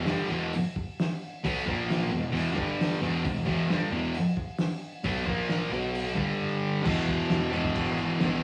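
A rough rehearsal-room recording with moderate studio reverb frames this swaggering, raw garage rock excerpt in straight 4/4, where a thick, bright, double-tracked fuzz guitar riffs up front over chords such as E5, A#5 and G5, a muffled, cloth-damped drum kit thuds with a fat snare, tight kick and dark cymbals, and an overdriven, picked electric bass sits in the background.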